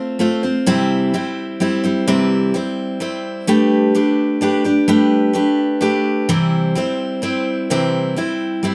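Heartfelt and down-home, this short country excerpt moves at 128 BPM in a straight 3/4 lilt. A picked steel-string acoustic guitar plays alone for the full 8.7 seconds, its bright dreadnought tone sitting up front in the mix. The part spans C3 to C5, moving through F, C, Gadd9 and back to C, with the Gadd9 arriving at 3.5 seconds. Moderate studio reverb gives the guitar a modest sense of room around it. The result is a plain-spoken fragment cut from a longer piece.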